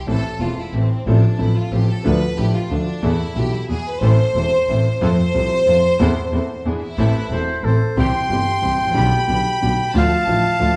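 Tango in A minor at 182 BPM in a rubato 3/4, playful and elegant, with a clear, earthy violin section carrying a close second line over warm grand piano and a distant, intense bowed double bass, joined at 4.0 seconds by very quiet, rich string stabs and briefly by an airy, mellow flute before a reedy bandoneon takes the melody up front from 7.7 seconds, all set in a wet, large studio reverb heard from further back in the room.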